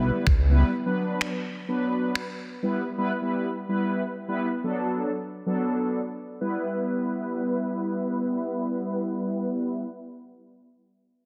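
Dance-pop in E minor at 127 BPM with a bittersweet yet energetic mood, this fragment opens with a brief burst of glossy, retro chorused synth bass that stops at 0.6 seconds, while a gritty, sampler-style drum kit of finger snaps and a thumpy kick enters at 0.3 seconds and runs only until 2.3 seconds, leaving the dark, round, detuned synth brass with chorus and vibrato to carry the Em, Bm and D6 changes under a filter sweep and sidechain pumping, all bathed in a lush plate reverb and a dense, heavily limited master.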